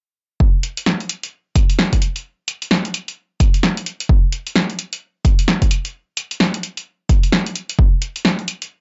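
UK garage at 130 BPM in 4/4, with a 61% swing on the sixteenths giving this short cut from a longer piece a bouncy, soulful feel. An up-front, punchy electronic kick starts at 0.4 seconds, joined at 0.6 seconds by an analog drum machine playing hi-hat and a punchy snare, both re-recorded in a small room. Light reverb and a rolled-off top end keep the sound dark and close.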